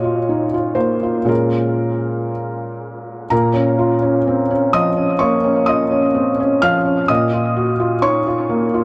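A felt-muted upright piano, soft and mellow with audible action noise and its thin felt sitting up front, plays solo through this short fragment of intimate, melancholic neoclassical minimalist piano in Bb minor. It moves rubato at around 59-65 BPM in 4/4, ranging from Bb2 to F6 over Ebmadd9/Bb and Bbm7 chords, moving to Bbm at 3.3 s and returning to Ebmadd9/Bb at 7.1 s, all cast in a heavy dub echo and light small-room reverb.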